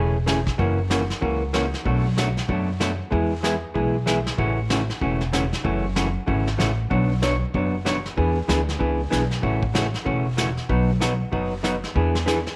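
A clean, dark hollow-body electric jazz guitar and a woody, growly pizzicato upright bass open this playful, down-home western swing excerpt together, with a vintage brush drum kit joining at 0.3 seconds. The tempo is a brisk 190 BPM in 4/4 with a swung eighth-note feel, set in A major. The picked guitar sits up front as accompaniment, moving through a bright progression that runs from Amaj7 and F#7 through Bm7, E, A6, F#m7 and Bmadd9 before turning around on E7, A6, B and E7. The bass sits low beneath it on steel strings, while the drums supply brushed snare, hi-hat and a punchy kick with a rolled-off top and a pumping small-room character. Light reverb and a small room ambience give the whole a cozy, old-time feel, and the fragment ends at 12.6 seconds, cut from a longer piece.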